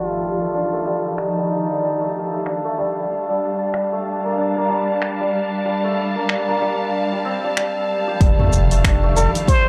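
The recording is dry and gritty, with a cassette-tape, hardware character and a dulled, filtered top. This short cut from a longer organic downtempo piece has an earthy, warm mood and a gentle swing. A hammered, shimmering santur plays ringing arpeggios up front, alongside lush bowed strings holding sustained chords with vibrato and sidechain pumping, and both pass through a filter sweep during the opening section. A muted plunger-mute trumpet plays a jazz-style solo melody with wah-wah inflections, grainy sampler grit and analog delay, then returns briefly near the end, while a glassy texture of drifting overtones hovers calmly in the background. A layered deep house kit of finger snaps, hi-hat, shaker and toms enters at 1.2 seconds, and very quiet electronic impacts mark the opening and the closing stretch. At 8.2 seconds a deep electronic kick and a round, nasal analog bass with tube saturation arrive.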